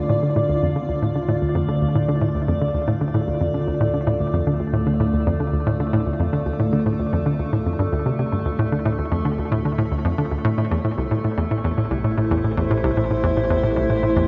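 Ambient, sequencer-driven space music in D minor, this mysterious, cosmic fragment is cut from a longer piece and moves at 113 BPM in a straight 4/4. A hollow, bouncy square pluck carries the riff from 0.1 seconds, its fast attack and short decay shaded by a noise layer, chorus and tape echo, and it sits up front as the most prominent part. Beside it, an evolving wavetable pad holds sustained chords, its morphing unison tone swelling in on a slow attack and trailing a long release through chorus, built-in reverb and phaser. Underneath, a fat, saturated analog bass built from detuned sawtooth and square waves stays in the background, thick and low. The harmony rests on Dm before shifting to Am7 at 10.6 seconds, and the whole cut unfolds in a vast, echoing space with a huge, wet reverb tail of 7.4 seconds.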